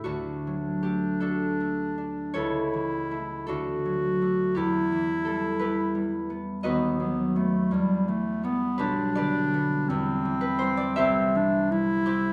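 Tender and warm, this romantic classical excerpt for clarinet and harp moves in a rubato 6/8 at about 49-59 BPM in D major. The concert harp, fingerpicked and ringing, supplies the accompaniment from the start, and the close-miked clarinet sings the melody up front between G3 and F#4 from 0.1 seconds. The harmony drifts from D through Em and B/D# toward G/B, C/E and C, all bathed in the wet reverb of a recital hall.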